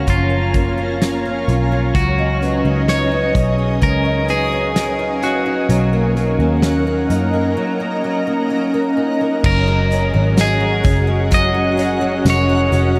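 A straight, unhurried 4/4 pulse at 64 BPM comes from a loose indie drum kit with a fat snare, tight kick, dark cymbals, hi-hat and tambourine, under a round, foam-muted picked electric bass sitting up front, in this blissful, dreamy slice of dream pop cut from a longer piece. A fingerpicked twelve-string acoustic guitar with octave-doubled shimmer, finger squeak, ensemble chorus and analog delay plays arpeggios while a bright, clean electric guitar with analog delay carries the melody over an ethereal, detuned pad of sustained chords, moving from F#maj7 through C#9sus4 and Bmaj7 to C#sus4/F# at 9.4 seconds. From 1.9 seconds a very quiet reversed, granular texture swells in the background, and the whole mix is soaked in a huge, wet reverb with a 7.2-second tail.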